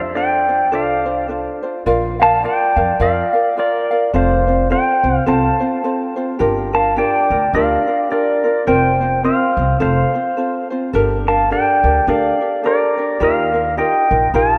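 Dreamy and languid, this Hawaiian excerpt sways with a gentle swing as a twangy, clean electric pedal steel guitar enters at 0.2 seconds to carry the melody up front, played with fingerpicks and slide and shaped by compressed volume swells. Beneath it, a light, thumb-plucked acoustic ukulele sits close in the mix while a woody, growly pizzicato upright bass with steel strings thumps along low. A lush hall reverb bathes the rough, demo-like mix as the chords drift from F6 through Bb, Gm7 and Fsus4 to Ebadd9.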